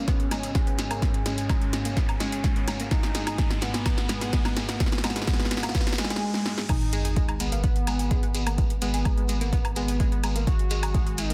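A dense, heavily limited modern master with light digital ambience carries this dramatic, driving melodic techno excerpt at 127 BPM in G# minor, tuned to A4 = 437 Hz. An up-front, tape-warm electronic kick anchors an overdriven deep house kit of crash, punchy snare, metallic hats and woodblock, with a grainy, distant shekere behind. Over this, a fat, detuned sawtooth lead with vibrato and delay carries the melody through a filter sweep, a nasal analog pluck with 12-bit grit, phaser and chorus spins arpeggios, and a morphing wavetable pad holds mellow chords in the background until 6.2 seconds, the three pumping to the sidechain as a riser and swell build. At 6.7 seconds the drum fills give way to the drop and a sub-drop impact, and a round, deep analog bass enters on G#1.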